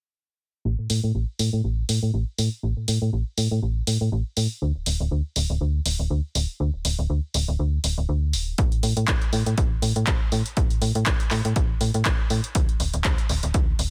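A swung 16th-note groove in 4/4 drives this nostalgic, funky filtered disco house excerpt, with a punchy analog drum machine of handclaps and hi-hats arriving at 0.9 seconds, its hats pumping against a sidechain. Up front, a snappy, slap-like FM bass with a metallic digital attack starts at 0.7 seconds, pumping and passing through a low-pass filter sweep throughout. A punchy electronic kick joins at 8.6 seconds, its tape-warm, small-room character matching the drum machine in a dry mix with little reverb.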